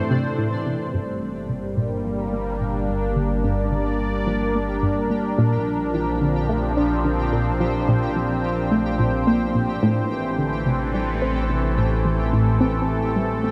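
Drenched in cathedral reverb, this excerpt of hypnotic, cosmic space music unfolds in a vast, echoing room at 108 BPM in G dorian, moving from Am through Gm and Bbadd9 back to Am. A bright, airy resonant pad sits up front, holding sustained chords with a slow attack and filter swell, while a tight, driving sequenced riff of detuned sawtooth and square waves plucks beneath, its filter sweeping from 0.9 seconds. A fat, thick analog bass enters at that same moment, and a pulsing, tempo-synced triangle texture fades in the background under its own reverb.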